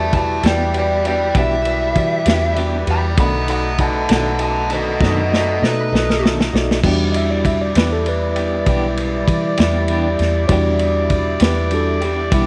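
Soulful and mournful, this slow blues in E minor moves at 66 BPM in a straight 12/8, cut from a longer piece and bathed in light reverb. A dark, smooth overdriven lead guitar sits up front with a picked solo over Em7 and B7#9, handing the spotlight at 6.8 seconds to a bright, bell-like tine electric piano heard through its built-in speakers, which takes its own solo over a return to Em7. A fat, lightly overdriven tonewheel organ with key click, chorus vibrato and a slow rotary speaker holds sustained chords in the background alongside a jazz-style horn section and a clean picked electric guitar with tremolo that enters at 0.4 seconds. Underneath, a round, foam-muted fingered electric bass and a vintage acoustic drum kit with a punchy kick, medium-tuned snare and dark, rolled-off cymbals sit up front. The drums play a fill from 5.0 to 6.8 seconds, marking the turn into the second section.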